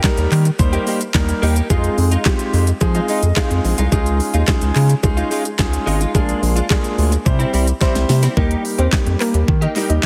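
A straight 4/4 dance-pop groove at 108 BPM drives this confident excerpt, built on a layered electronic kit with a knocking kick, fat snare and crisp hats alongside a very quiet, distant group handclap, joined from 0.2 seconds by a deep, round analog bass. A polished grand piano pumps with sidechain over chords moving from Eb through Fm7, Dbadd9, Bb7 and C, adding a fill at 2.8 seconds, while a bright, direct-recorded clean electric guitar picks a chorused riff. After a drum fill, a soft, gentle pluck carrying a filter sweep enters with the melody at 8.4 seconds, all set in light digital ambience and a heavily compressed radio sound.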